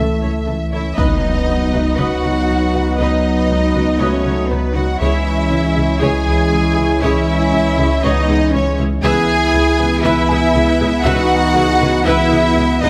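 A cinematic hybrid orchestral and electronic film score in C# minor at 119 BPM, brooding and relentless, with a clear, intense cello section, a pure sine sub bass and a studio double bass section holding a low C#2 foundation beneath a brassy, detuned analog pad with chorus and mellow French horn chords, as harmony moves from A/C# to B/C# and settles on C#m at 5.0 seconds. A close studio violin section and a close, lush viola section, both with vibrato, sit in the background. A symphonic violin melody enters at 0.7 seconds, and a very quiet bright trombone section joins at 1.0 seconds alongside a huge impact that rings until 3.0 seconds. A soft, felt-muted upright piano adds dark, intimate texture under light reverb in this short fragment of a longer cue.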